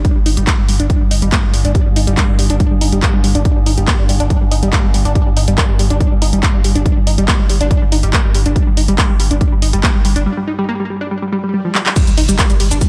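Driving peak-time techno in G minor at 141 BPM, relentless and intense, built on a heavy layered electronic kick with small room ambience, a dry analog drum machine of handclaps, hi-hats, shaker, ride and crash cymbals pumping against the kick, a thick overdriven sine sub bass holding G1 under a low-pass filter, a tight, nasal detuned-sawtooth sequenced riff with filter plucks, a moving notch, chorus, tube saturation and delay, and an eerie metallic FM drone sitting in the background with chorus and reverb, until a break at 10.3 seconds gives way to a very quiet electronic swell at 11.3 seconds that lands on an impact at 12.0 seconds in this cut from a longer piece.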